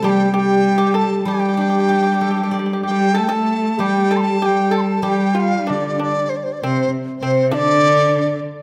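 Bathed in a recital hall's lingering reverb, this short fragment of graceful, festive Chinese chamber music unfolds in free rubato. An airy, buzzing dizi carries the melody up front beside a clear, focused bowed cello, while a breathy end-blown xiao sits in the background, a dry, percussive pipa adds another line, and a silvery, ringing steel-string zither accompanies until 6.9 seconds.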